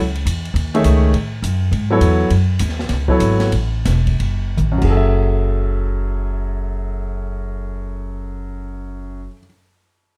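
Modal jazz in F# dorian, this short cut from a longer piece feels intense yet cool, swinging in 4/4 at a tempo that ranges from 144 to 206 BPM and slows between 2.3 and 5.0 seconds. A woody, pizzicato upright bass with steel strings sits up front from the very start, anchoring the low register from E1 to A2. An open acoustic drum kit joins almost immediately with crash and ride cymbals, hi-hat, a medium-tuned snare, toms and a boomy kick, closing its brief part with a fill from 4.6 to 5.0 seconds. A clear, intimate grand piano comps from 0.7 seconds, spanning F#2 to E5 with its action noise audible, opening on an F#m9 chord. After the drums drop out near 5 seconds, bass and piano carry the second section on their own, framed by light reverb in a dark, warm production.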